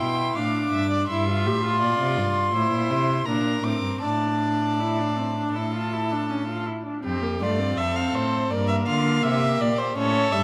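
All four strings of a quartet begin together in this short cut from a serious, solemn fugue in baroque style, played in period manner on gut strings with a reedy edge shared by every instrument. The first violin carries the melody high above the group with an airy bow and a nasal colour, sitting close to the listener. Beneath it the second violin spins a quieter second line, while the viola fills in the accompaniment with light vibrato from a more distant spot. The cello anchors the bass, its rich, up-front sound giving the steady four-beat pulse a firm footing. The harmony moves from E minor through a diminished chord toward a suspended A, and at 7.0 seconds the music turns to a new passage over D minor and a half-diminished colour. A moderate concert-hall reverb, with a decay of 1.8 seconds, lends the ensemble a dignified sense of space.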